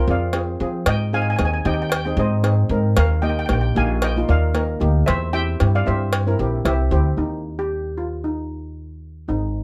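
A lightly swung sixteenth-note groove at 114 BPM in 4/4 drives this festive, sunny calypso in Eb major, cut from a longer piece. A shimmering lead steel pan, struck with hard rubber sticks in a boxy small-room sound, carries the melody over an airy double-seconds pan played with medium rubber sticks. A thumpy, woody pizzicato upright bass on steel strings sits up front, and a close, dry metallic cowbell ticks along from 0.3 to 6.8 seconds, while a steel pan fill arrives at 6.4 seconds before the music moves into a new section.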